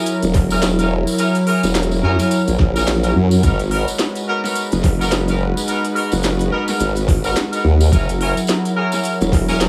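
A swung sixteenth-note groove at 107 BPM in 4/4 drives this swaggering, funky glitch hop fragment in G# minor, tuned slightly flat to A4 = 436 Hz and cut from a longer piece. A gritty, overdriven electronic kick, pitched down and thumpy, sits up with the formant-sweep wobble bass, whose sawtooth-and-sine tone wobbles low under a chorus sheen and stays front and center. Around them, an electronic drum kit supplies a cracking snare and crisp hi-hats with studio reverb, while a jingly acoustic tambourine adds live-room shimmer at a lower level. A smooth, detuned analog pad holds sustained chords that pump with the sidechain, moving from F#7 to G#m7 at 3.4 seconds and back to F#7 at 7.9 seconds. Alongside it, a distant jazz-style horn section fires tight stabs with light vibrato and dub echo, and a warbly, lo-fi tape-like pad drifts nostalgically in the background through its built-in reverb, all set in a small digital room ambience.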